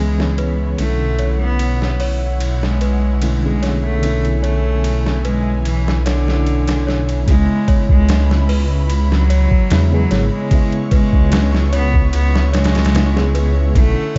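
A straight 4/4 boom bap groove at 74 BPM anchors this brooding, melancholic trip hop excerpt in C# phrygian. The sampler-style kit enters at 0.2 s with a thumpy kick, medium-tuned snare, hi-hat and ride, compressed and pitched down up front, with high-pass filtering on each drum and studio reverb. Beneath it, a deep, rumbling detuned saw bass beats against itself between G#1 and E2 before dropping out at 13.9 s. A reedy, mellow electric piano carries the accompaniment with tremolo and 12-bit sampler grit, a filter sweep shaping it through the opening section until 7.3 s, when the harmony moves from Bm11 back to C#m7. Over this, a single bowed cello sings a biting, earthy melody with light vibrato and tape echo, while a smooth symphonic string section holds sustained chords in the background, and a slightly out-of-tune celesta adds bell-like arpeggios softened by a low-pass filter, sampler grit and digital delay, all set in a small room with a dark production.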